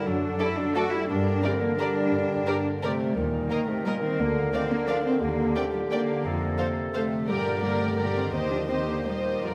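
A waltz in three, shaped with rubato, this sweeping, festive orchestral ballroom passage is cut from a longer piece and set in a moderate concert hall reverb. Up-front cellos carry the bass with the double basses. At 0.4 seconds they are joined by a dark, smooth-topped violin melody, a pure, floating second violin line and very quiet violas, all the strings bowed sul tasto with soft attacks. A warm clarinet adds a second line, while a mellow bassoon, a French horn section holding sustained chords and a ringing, fingerpicked concert harp playing arpeggios sit in the background.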